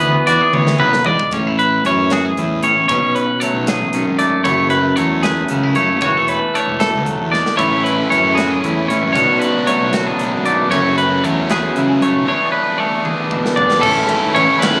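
Intricate and bright, this short math rock and midwest emo passage moves in a straight 6/8 at 77 BPM in A major, tuned slightly low to A4 = 438 Hz. Two clean, picked, twangy electric guitars run through the whole piece, one up front playing chordal accompaniment while the other spins high arpeggios. Beneath them, a fingered electric bass with overdriven fuzz adds a thick, growling low end, and an acoustic drum kit with a tight kick and medium-tuned snare marks the turns with fills around 0.5 seconds, 7.3 seconds and 13.0 seconds. At 7.6 seconds a biting, double-tracked overdriven guitar enters up front with a riff bathed in spring reverb. The chords cycle through Amaj7, Bm9, F#m9 and E7sus4 twice, and the sound carries the compressed feel of a phone recording in a club.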